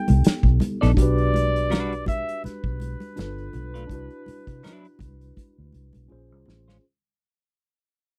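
Introspective and late-night, this brief neo-soul and R&B fragment moves at 82 BPM in 4/4 with a lightly swung sixteenth feel, fading out across its whole length over chords such as B7b13, Em9/B, G9 and Cmaj9#11 before landing on Bbm9. A jazz-styled solo flugelhorn carries the melody with vibrato until 6.1 seconds, over a mellow, clean tine electric piano, while a semi-hollow electric guitar enters at 0.8 seconds with a dark, fingered second line. Up front, a round, foam-muted electric bass and a small-room acoustic kit played with bundle sticks, with a tight kick and medium-tuned snare, anchor the groove; ringing congas sit in the background, and the kit closes with a drum fill from 6.1 seconds in a dry, close 1970s-style studio sound.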